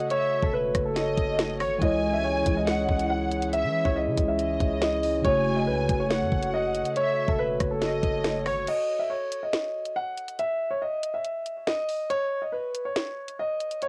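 Recorded at home onto cassette with light reverb, this cold, ominous half-time drill excerpt has a hazy, tape-soaked grain. An up-front concert grand piano with a deep low end carries the melody through tape echo, shadowed by a distant, woody violin section playing a dark, lush second line with vibrato. A mellow tine electric piano, clean and direct under a phaser, and a glassy, ethereal glass harmonica with slow, smooth attacks fill out the harmony over F#m and C#madd9. The electronic drill kit sits up front with a knocking kick, sharp snare, rim clicks, crash and tape-softened hats, while a punchy, heavy 808-style bass with a fast attack and decaying sine tone enters at 0.4 seconds. At 8.7 seconds the strings, keys and bass drop away for a break, leaving only piano and drums to carry the track.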